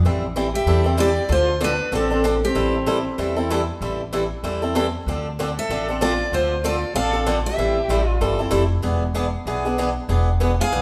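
Acoustic string swing in the jazz manouche style, bittersweet yet fiery, moving at a brisk 191 BPM in A minor over a chord cycle of Am7, Dm7 and E7. An up-front, boxy swing guitar and a woody, thumpy pizzicato upright bass on gut strings drive the rhythm throughout. A bright steel-string guitar carries the melody in short phrases, finger squeak audible, joined by a single bowed violin with expressive vibrato and portamento, all set in a live room with a moderate large-studio reverb in this brief cut from a longer piece.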